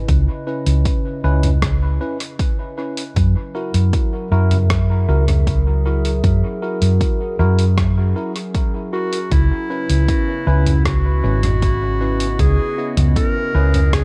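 A dry, close-sounding mix centres on a round, punchy hollow-body electric bass sitting up front with tube saturation, in this meditative, hazy ambient dub excerpt at 78 BPM in C# dorian, moving from C#m7 to F#7 and back. A warbly, nostalgic tape-like pad with chorus holds sustained chords low in the mix, while an overdriven deep electronic kick and a muffled, sampler-style kit of hi-hat, rim click and toms, the kit trailed by dub echo, sit beneath bright, barky electric piano stabs filtered and echoed. At 8.9 seconds a clear, classical-style clarinet enters with a solo melody trailed by its own dub echo.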